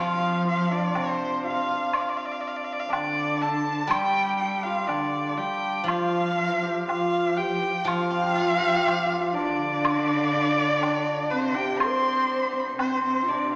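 Chinese traditional chamber music with a graceful, festive mood and a free rubato feel, this excerpt sets a clear, bowed erhu up front with vibrato and portamento over a shimmering hammered dulcimer and a rich, expressive cello, a silvery, fingerpicked steel-string zither in the background that stops at 10.8 s, a close woodblock entering at 1.0 s, and an airy, mellow low xiao joining at 5.9 s, heard in a wet scoring-stage reverb.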